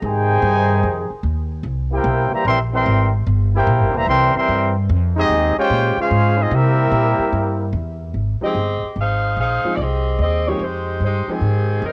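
Sultry and brassy, this short swinging jazz excerpt in 4/4 moves over minor-key changes with a triplet lilt. A dark, smooth-topped trumpet section carries the melody up front from the start, while a clear trombone section sings a second line beneath it, both with light vibrato, until around 7.8 seconds. A woody, thumpy upright bass, plucked on steel strings, anchors the whole piece from beginning to end. At 8.4 seconds the brass gives way to a saxophone section that takes over the melody with a roomy, slightly distant glow, joined by an intimate baby grand piano whose action noise and long sustain can be heard as it accompanies. The sound has the muffled, homemade character of a cassette recording, set in a light studio reverb.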